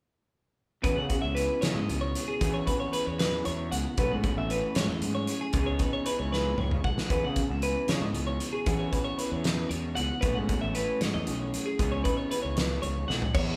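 From 0.8 s, this bright, intricate math rock and midwest emo excerpt in 6/8 at 77 BPM in E major brings in a twangy, compressed twelve-string electric guitar picking high arpeggios, a slightly broken-up guitar through a small old amp, a punchy overdriven fuzz bass and a loose indie drum kit with a fat snare and dark cymbals. The band plays live in one room with a moderate, large studio reverb as the chords cycle through E69, B9sus4 and C#m9, with drum fills at 6.3 s and 13.1 s.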